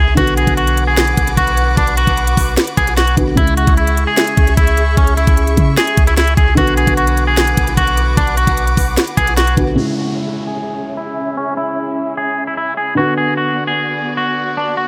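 Brooding and hard-hitting, this half-time trap passage moves at 150 BPM in C# phrygian, shifting between Bm and C#m chords. A twangy, clean electric guitar carries the melody up front, softened by a low-pass filter and tape echo. Beneath it, a dark baby grand piano with a vintage, mellow tone and audible action noise supplies filtered accompaniment. Lush bowed strings with vibrato and a soft attack hold sustained chords throughout. A deep, boomy 808-style sine bass and an electronic kit with a knocking kick, sharp snare and crisp hats drive the opening until about 9.8 seconds, when both fall away and a filter sweep, downlifter and riser carry the closing stretch. An echo-heavy digital ambience surrounds the whole mix.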